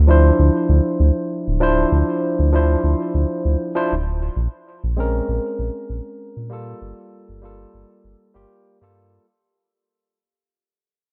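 A dark, warm production with light reverb frames this short sunset-chillout excerpt in D minor, moving at 98 BPM with a gentle sixteenth-note swing and a smooth, warm mood. A round, deep analog synth bass sits up front, carrying a filter sweep throughout, while the whole clip fades out from start to finish. A barky, lightly overdriven tine electric piano with tape echo plays the accompaniment through Dm9, Bbm9 and Gm9 chords.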